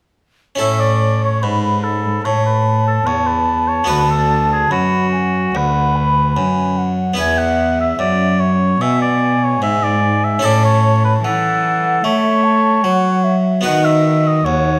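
A warm, vintage-toned oboe carries the melody up front in this radiant, serene baroque-style sonata movement, an excerpt cut from a longer piece with a flexible, rubato feel in 4/4. A baroque flute weaves a second line above it with a pure, woody tone, vibrato and tongued articulation. Beneath them, a bowed cello played by one musician supplies a dark, reedy gut-string bass that sits close and prominent, while a plucked, French-style harpsichord with a single set of strings adds an airy, bright accompaniment. All four instruments play together from 0.6 seconds to 14.8 seconds, moving through a short chord progression. The sound is close and detailed, set in a moderate recital hall with a reverb time of 1.4 seconds.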